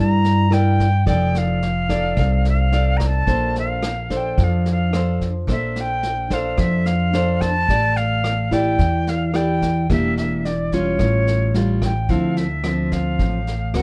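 A straight 4/4 bossa nova groove at 109 BPM in D minor sets a melancholic, smooth mood, with a vintage brush drum kit entering at 0.2 seconds: its punchy kick, rim click and medium-tuned snare sound distant and roomy with a rolled-off top. Up front, a full-bodied, fingerpicked nylon-string guitar with fresh strings and audible finger squeak carries the chords from Gm6 through Bbmaj9 and A7b13, while a woody pizzicato upright bass anchors the low end. An airy metal jazz flute sings the expressive melody with vibrato and a crisp, chiffy attack, all in a dark production with little reverb, before the harmony settles on Dm9 at 12.1 seconds in this excerpt cut from a longer piece.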